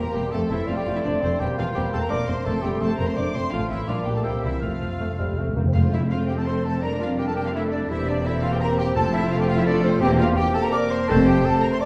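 A focused, vibrato-rich violin section carries the cheerful, graceful melody of this quick classical-period symphonic movement in F major, moving at 168 BPM in a rubato 3/4 and set back in a reverberant recital hall. Beneath it, a lush second violin line, a bright close-miked clarinet, an airy silver flute with crisp attack and a mellow cor anglais weave supporting lines, while smooth violas, a tight French horn section holding sustained chords and a bassoon that drops out at 5.7 seconds fill the accompaniment. Cellos and double basses anchor the bass, and hard-mallet timpani enter at 2.5 seconds with an articulate fill from 4.6 seconds before the graceful second section unfolds.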